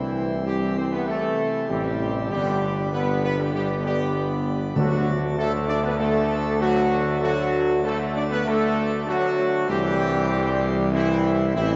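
Steeped in a long cathedral reverb with a dark, warm production, this triumphant, majestic classical excerpt moves at 97 BPM in D major. A trumpet section carries the melody up front, while a bright trombone section, distant French horns and a brilliant plenum pipe organ with mixtures and chiff hold sustained chords over a clear, soft-attacked tuba bass. The harmony moves from C to G to D and returns to C, and a very quiet calf-headed timpani sounds briefly from 4.8 to 5.6 seconds.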